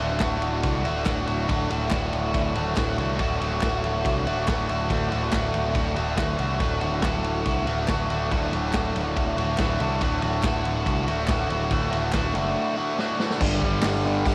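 Garage rock with a swaggering, raw attitude, this excerpt moves at 141 BPM in a straight 4/4 feel in D mixolydian, tuned slightly sharp to A4 = 445 Hz. A biting, double-tracked overdriven guitar sits up front playing the riff, its bright picked tone carrying a cassette-tape grit, while a growling picked electric bass, overdriven and direct-and-amped, holds the low end from the start. From 0.2 s a vintage acoustic drum kit joins with a punchy kick, medium-tuned snare, hi-hat, ride and crash, its dark cymbals and rolled-off top also colored by cassette tape. Crisp group handclaps sit close but in the background, stopping at 13.9 s. The excerpt rests on a D chord until a drum fill at 13.0 s leads into a G5 at 13.4 s, all set in light reverb with the homespun feel of a cassette home recording.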